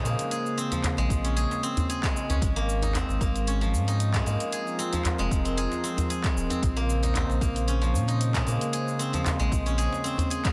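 A bright, silvery steel-string zither sits up front in this short excerpt of organic downtempo, its fingerpicked arpeggios ringing through a digital delay from F3 to Ab4. Beneath it, a smooth sawtooth analog pad holds sustained chords with a soft attack and long release, treated with chorus and sidechain pumping, while a deep, round sine sub bass with a fast attack pumps along underneath until 9.9 s. The hypnotic, earthy groove moves at 114 BPM in 4/4 with a light 16th-note swing, cycling through Bbmadd9, Absus4 and Fsus4 before returning to Bbmadd9 in Bb minor. A layered deep house kit with dark hats, cabasa and handclaps enters at 0.1 s alongside a medium-tuned djembe played with hard hands in the background, and a punchy electronic kick joins at 1.1 s. Light reverb and digital ambience frame a dense, heavily limited modern master.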